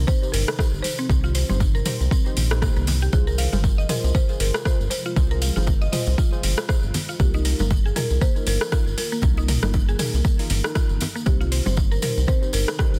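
A round, dark analog bass sits up front beside an overdriven electronic kick, driving this hypnotic, spiritual afro house excerpt at 118 BPM with a 16th-note swing, while a layered deep house kit adds metallic hi-hats, rim clicks and toms over very quiet, ringing congas and a jingly, saturated tambourine. A woody, FM-flavoured synth pluck spins chorused arpeggios with dub echo, and a rustic folk marimba carries the melody in the background, its echoing notes joined by soft, nasal chord stabs that pump with the sidechain. An ethereal, airy pad holds sustained chords very quietly underneath as the harmony moves from Cm to Fm at 3.1 seconds and back to Cm at 11.3 seconds, all in a dry, dense and heavily limited modern mix.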